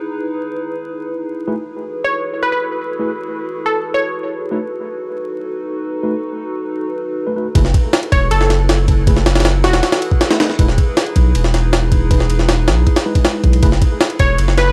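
A dry, gritty hardware recording dusted with vinyl crackle opens on a warbling, detuned tape-like pad holding sustained chords, its lo-fi sampler grit and chorus giving the dark, raw drum and bass and jungle cut a nostalgic haze in F# dorian at 158 BPM. A mellow tine electric piano enters at 1.5 seconds with stabs through lush chorus, a low-pass filter and dub echo, moving over Emaj7, F#m11 and B7. A glassy, crystalline wavetable pluck carries the melody up front in short phrases, its filter sweep and noise layer heard through chorus and dub echo. At 7.6 seconds the drop arrives: a thick, saturated sine sub bass and a compressed, pitched-up jungle sampler-style kit with a thumpy kick, high-tuned snare and ride cymbal both land up front. This second half cycles F#m11 and Emaj7 as a fragment taken from a longer piece.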